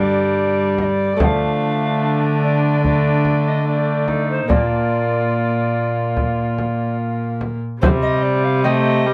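A dark production with light reverb frames this courtly, solemn excerpt of a renaissance-style consort dance in four. A distant alto recorder carries the melody with a pure, wooden tone, chiff and vibrato, while a mellow cor anglais plays a soft-attacked second line until 7.5 seconds. A fingerpicked lute with doubled gut strings sits in the background beside a nasal, reedy viola, a smooth-topped cello sits up front on the bass, and a deep frame drum played with soft hands enters at 0.8 seconds and stops at 8.2 seconds.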